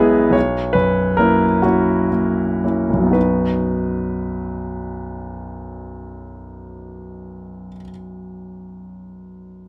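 Passionate and lyrical, this brief fragment of a romantic classical character piece for solo grand piano unfolds in B major and a rubato 6/8 at roughly 36-51 BPM in dotted quarters, easing to a slower pace over its opening 3.1 seconds as an F#7/B harmony settles onto B, with the clear, natural-sounding instrument spanning B1 to D#5, captured up front by close, detailed microphones that reveal the intimate action noise of the keys within a light reverb.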